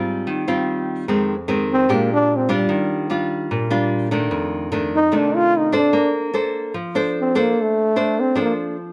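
A fingerpicked nylon-string guitar opens this breezy, relaxed bossa nova excerpt at 148 BPM in Bb major, its classical-style playing up front with audible finger squeaks as it moves through chords such as Ebmaj9 and Bbmaj9. At 1.7 seconds a mellow trombone enters to carry the melody as a jazz-style solo, punchy and forceful yet touched with light vibrato, sitting up front until 8.5 seconds. A light reverb gives the short passage a gentle sense of space.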